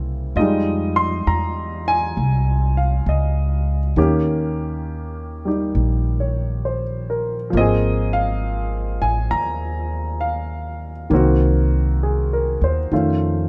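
A warm, present, up-front baby grand piano provides the accompaniment in this romantic, late-night jazz ballad in Ab major, moving through chords such as Fm9, Eb7 and Ab69 at an unhurried 67 BPM with a gentle swing. Beneath it, a woody, thumpy upright bass plucked pizzicato on steel strings sits close in the mix, and both parts play together from start to finish of this short 13.5-second section cut from a longer piece. Light reverb and a dark, warm production give the sound an intimate, after-hours glow.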